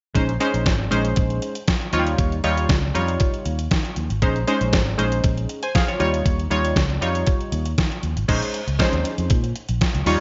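A punchy sawtooth polysynth opens this late-night boogie funk fragment at 0.1 s, its chorused, fast-attack chords sustaining up front through a filter sweep. A fingered electric bass, warm, amped and growly, enters at 0.2 s alongside a detuned 8-bit drum machine. The machine also sits up front, its sampler-style thumpy kick, medium-tuned snare, hi-hat and crash cymbal sounding tape-warm and roomy from being re-recorded in a large room. The harmony alternates between Bbm11 and Eb9 before a new section arrives at 8.3 s on Bbm11. A moderate plate reverb soaks the dreamy, dark-topped mix, which holds nothing above 7.6 kHz, lending the groove a funky, after-hours haze.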